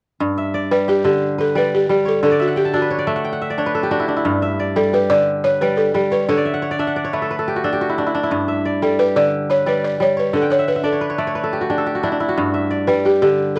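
West African traditional string and xylophone music in a flowing, hypnotic 12/8, where a bright, ringing kora sits up front with crisp fingerpicked arpeggios and recurring fills around 2.2, 6.3 and 10.3 seconds, while a woody, buzzing balafon played with soft rubber mallets carries the melody over a repeating G and D harmony in a dry, close 1970s-style studio sound with a touch of small-room reverb.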